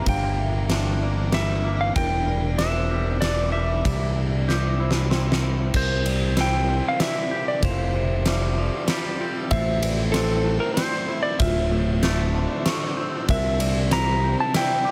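In a straight-feeling 3/4, this brooding, cathartic post-rock excerpt rides on a huge arena drum kit with a fat snare, boomy kick and bright cymbals, up front beside a growling, overdriven fingered bass, and a drum fill from 4.5 to 5.7 seconds leads into the second section. A twangy, phased electric guitar and a ringing vibraphone in the background both play arpeggios through tape echo, while a very quiet, icy, crystalline glass pad holds sustained chords underneath. On top, a clean lap steel guitar carries the melody with slide and volume swells, its compressed tone trailed by tape echo, all in a small room with light reverb.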